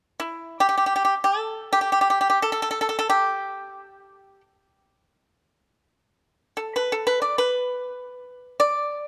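Chinese traditional music for solo plucked strings, this short excerpt cut from a longer piece unfolds in free time in the G gong mode, with a pastoral, serene mood. A lone pipa carries everything, entering at 0.2 seconds and playing until 9.1 seconds, its line moving within the range of E4 to D5. The instrument is played with fingerpicks, giving each note a bright, percussive attack, and it sits up front in the sound. Close, detailed microphones capture the pipa's dry, acoustic tone, touched only by a light reverb. The unmeasured phrasing lends the excerpt a calm, pastoral quality.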